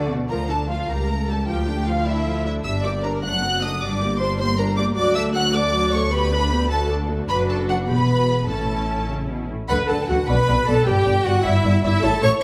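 A quick classical-period movement for string orchestra in a lilting 6/8, this brief passage cut from a longer piece feels cheerful and graceful. A violin section carries the melody from 0.3 seconds, its bowed tone rich, smooth, even and close with vibrato, while a second violin section adds a focused second line beneath it. A lush viola section fills in the accompaniment, and the cello and double bass sections share the bass, the cellos warm with light vibrato and the basses smooth-topped and even. The harmony begins in a minor key before brightening into the major from 5.0 seconds, and a new section opens at 9.7 seconds. The ensemble sits in a wet recital-hall reverb that gives the sections a spacious, resonant glow.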